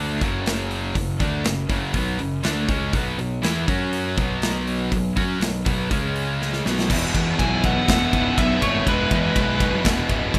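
Dark and heavy, this heavy metal excerpt at 121 BPM in 4/4 opens with two bright distorted guitar riffs, one tight, the other overdriven and further back, over a punchy, fuzz-laden electric bass and an up-front rock drum kit with bright cymbals and a punchy kick. After a drum fill, the music drops into half time at 6.9 seconds on an E chord, where a very quiet, double-tracked sludgy guitar riff joins and a reedy, gut-string chamber string section adds sustained chords in the background. From 7.4 to 9.8 seconds, a nasal lead guitar with a parked wah carries the melody while a high-gain lead guitar plays a second line behind it, all in a dry, rough home-demo mix.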